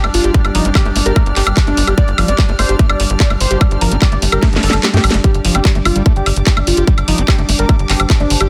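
A tight, up-front electronic kick enters at 0.3 s and drives this hypnotic psychedelic trance passage at 147 BPM in straight 4/4, tuned to A4 = 437 Hz, beside a punchy, wave-folded sequencer bass and a layered garage kit of cracking snare, handclaps, woodblock and warm hats that plays a fill from 4.4 s while the kick drops out between 4.8 and 5.2 s. Above them, a thick, nasal unison lead carries the melody with vibrato, phaser, delay and cassette-tape colour, and a squelchy, screaming acid riff sits in the background with distortion, chorus and delay. A resonant drone with moving overtones, a dark, bowed chamber string section played sul tasto, and sidechain pumping on the lead, acid line, drone and strings fill out a dry, dense and heavily limited mix.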